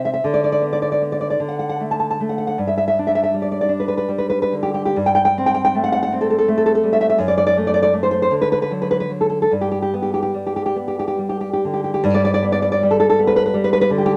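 This is a romantic piece for solo classical guitar, tender and nostalgic in mood, taken from a longer work and lasting about 14 seconds. A single nylon-string guitar carries everything, its thumb-plucked tone warm and placed up front, ranging from low F#2 to A5. The music moves in a lilting 6/8 with a free, rubato feel, so the pulse breathes and lingers rather than holding strict time. The harmony drifts from Bm/D through D5 and G5 to Am7/G, passes through a wistful F#dim, then settles on D and G. At 12.0 seconds the opening material returns just before the excerpt is cut off. A moderate studio reverb gives the instrument a gentle sense of space.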